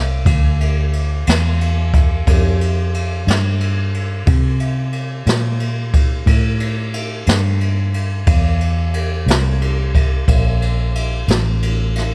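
A dark, foam-muted electric bass with a round, punchy amped tone sits up front from the start, ranging from A1 to C3 in this rollicking, gritty slow blues in 12/8. A jazz drum kit played with brushes joins at 0.3 seconds, with a boomy kick, medium-tuned snare and dark ride cymbal, its rolled-off top giving a small-room intimacy. The short cut from a longer piece is dry and close, with both parts placed forward.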